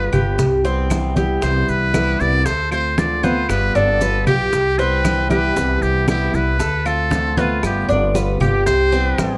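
A buzzy, metal-muted trumpet leads this relaxed Cuban son and guajira excerpt at 116 BPM in C major, carrying an up-front jazz-style solo melody with vibrato and scooped notes over a growly pizzicato upright bass, a boxy fingerpicked swing-style acoustic guitar and a metallic, double-strung Cuban tres playing arpeggios. Soft-handed, thick-skinned congas, woody claves and grainy maracas join at 0.1 seconds, with tight, high-tuned bongos following very quietly at 0.4 seconds. The band cycles through Cmaj7, Dm7 and G7 under light reverb.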